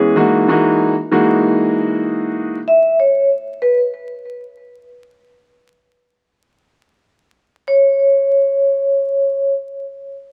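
A metallic, ringing vibraphone played with medium hard mallets carries the melody in this dark, moody hip hop fragment, cut from a longer piece and played in free time. Its smooth tone, with a medium motor vibrato, sits up front and passes through high-pass and low-pass filters and a delay, appearing first at 2.7 seconds and again from 7.7 seconds as the second section begins. Before that, a warm grand piano opens the fragment as accompaniment, up front and colored by cassette tape and high-pass and low-pass filtering, sounding an F#13 chord before it stops at 2.6 seconds. Vinyl crackle runs beneath, and light reverb with a small room ambience gives the sound an intimate, dusty setting. The instruments are tuned to A4 = 437 Hz.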